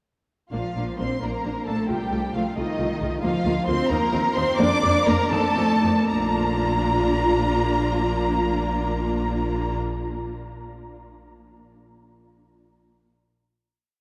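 From 0.5 s a string orchestra plays a quick, spirited and cheerful classical-period movement in Bb major and 6/8 at 76-90 BPM with rubato, the symphonic first violins carrying a lush, expressive melody with vibrato and portamento that the second violins double in unison and at the octave and the focused cellos double at the octave, over distant violas on repeated notes and sustained chords and a clear double bass section on repeated and sustained bass notes, slowing from 2.6 s before settling on a final Bb chord at 6.1 s that rings out in a dark cathedral reverb.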